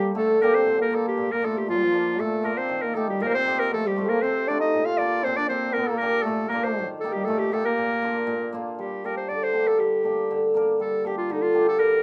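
In a straight 2/4 at 119 BPM, this bittersweet, soulful klezmer excerpt moves through Bb major before shifting to G minor at 8.8 seconds, with a hammered, shimmering cimbalom ringing up front as accompaniment throughout. A clear, smooth-topped clarinet carries the melody in a classical style, while a bright, punchy trombone with vibrato plays a close-miked second line in a pop style until it stops at 8.5 seconds. A moderate small-room reverb gives the trio an intimate setting.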